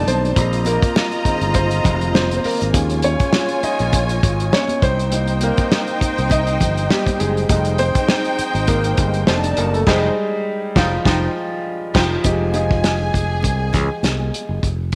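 Lush 1970s-style soul in F minor at 101 BPM with a gently swung sixteenth feel, smooth and silky, cut from a longer piece. A woody, vibrato-rich bowed string section carries a second line over up-front grand piano accompaniment, a growly, bright fingered electric bass and an acoustic drum kit with dark cymbals, a tight kick and a rolled-off top, while very quiet, high-tuned congas ring close and dry under light reverb. The piano takes a solo from the start to 12.3 seconds, with a band accent from 9.9 seconds and chords moving through Bb9sus4, Eb9sus4, Cm7, Fm9 and F13 before the music shifts into a new section.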